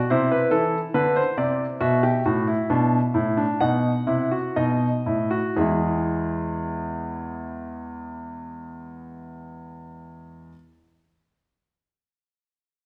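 A clear, polished baby grand piano plays alone, up front and present, in a contemplative, serious baroque-style three-part fugue cut from a longer piece, easing its pace through the opening 5.6 seconds as the harmony moves from Am/C through B7sus4 and B7 to settle on E, all set in a recital hall's wet reverb.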